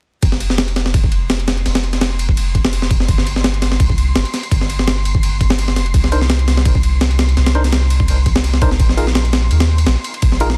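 The breakbeat drums sit up front, a sampler-style kit pitched up and compressed, with a thumpy kick, a medium-tuned snare and ride cymbal carrying a gritty, tape-warm edge over a small-room ambience. This dark, atmospheric drum and bass excerpt with jungle roots runs at 168 BPM in 4/4, its sixteenths lightly swung, and is cut from a longer piece. Beneath the drums, a soft dub sub bass holds deep, round, sustained notes between F1 and Eb2, moving through F5 and a rootless Fsus2 before the harmony drops out and lands on Bbsus4. From 1.0 seconds a breathy, wind-like tuned noise texture hovers in the background around C6, drifting in its own reverb. At 6.1 seconds a worn, slightly out-of-tune tine electric piano adds lightly overdriven stabs between D4 and C5, thrown into dub echo. The dense, heavily limited master is dry overall, with vinyl crackle and lossy compression artefacts clinging to the sound.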